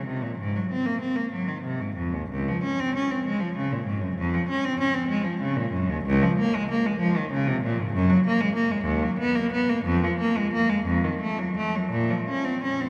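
A single bowed cello opens the recording, rich and focused, playing alone and up front in a baroque-style suite movement for unaccompanied cello. The music moves in 6/8 at roughly 56-67 beats per minute, counted in dotted quarters, with a rubato feel that lets the phrasing breathe in an introspective, flowing mood. It begins in Db major and turns to Bb minor at 6.0 seconds, ranging from Db2 up to Db4, with vibrato coloring the line and a smooth top register. The single player is set in a vast, echoing space, where a cathedral reverb with a 6.8-second decay trails each note. The passage runs 12.9 seconds, cut from a longer piece, and tuned slightly below standard pitch at A4 = 437 Hz.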